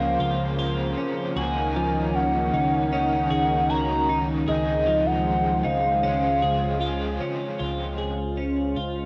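A home cassette recording with moderate studio reverb carries this dreamy, ethereal dream pop fragment, where a hollow, woody clarinet-like synth lead with vibrato, chorus and analog delay sings the melody until 7.2 seconds over bright, twangy twelve-string electric guitar arpeggios in lush chorus, a smooth, detuned sawtooth pad holding sustained chords up front, an overdriven, double-tracked stack guitar with tremolo sitting low in the mix until 8.1 seconds, and a round picked electric bass anchoring the bottom on Db2.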